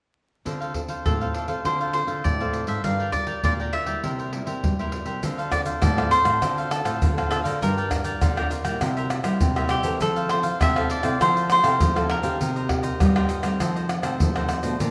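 Samba and choro with a bittersweet, yearning mood, in which a crisp, up-front picked cavaquinho carries the melody from 1.1 to 13.3 s over a bright second cavaquinho picking chords, a dark fingerpicked nylon-string guitar with audible finger squeak sitting in the background, a thumb-plucked nylon-string bass line, and a live-room percussion section of tight surdo, hard-handed pandeiro, egg shaker and tamborim, all set in a moderate recital hall reverb with a layer of vinyl crackle in this fragment cut from a longer piece.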